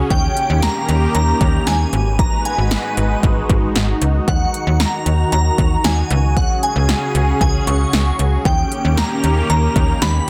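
A straight, driving pulse from a punchy, up-front deep house drum kit with smooth hats anchors this cool synth-pop clip, where a snappy FM bass with a metallic attack pushes forward beneath a thick, detuned unison pad treated with chorus and phaser, while a shimmering, dreamy FM bell melody glows with ensemble chorus and digital delay over a dense, heavily limited modern master.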